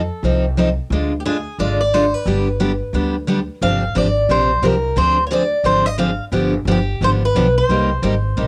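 A boxy, picked swing-style acoustic guitar carries the melody in this short, bittersweet and virtuosic excerpt of acoustic string swing at 177 BPM, its finger squeaks audible up front over a swung feel. A full-bodied steel-string dreadnought guitar with fresh strings joins at 0.2 seconds to pick out the accompaniment, its tone colored by cassette tape, while a woody, thumpy upright bass on gut strings plays dark pizzicato lines underneath. The home-recorded sound sits in light reverb as the chords move from F7 through diminished and G7 harmonies to close on Cm7.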